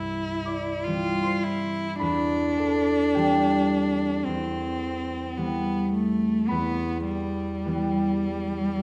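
Serene and warm, this brief classical excerpt pairs a rich, smooth bowed cello carrying the melody with vibrato, close and up front, against a mellow, ringing concert harp plucked with the thumb in a rubato romantic accompaniment over C, C/E and E minor harmonies, all bathed in the lush reverb of a scoring stage.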